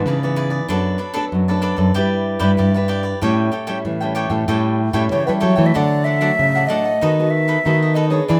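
This festive, playful samba excerpt opens with two fingerpicked nylon-string guitars: one plays a full-bodied, up-front accompaniment with a fresh-string ring, and the other carries the bass line with a deep classical tone. A bright, crisp cavaquinho joins at 0.1 seconds, adding picked accompaniment higher up. The groove moves at 95 BPM in a straight 4/4 in D major, passing through E7/G#, Bm7/F#, Em7/G and A7 before resolving to D and then turning toward B7/D#. At 5.1 seconds a close-miked wooden flute enters with the melody, its airy, woody sound carrying vibrato and tongued notes near the front. A moderate studio reverb gives the ensemble a sense of room, and the excerpt is cut from a longer piece.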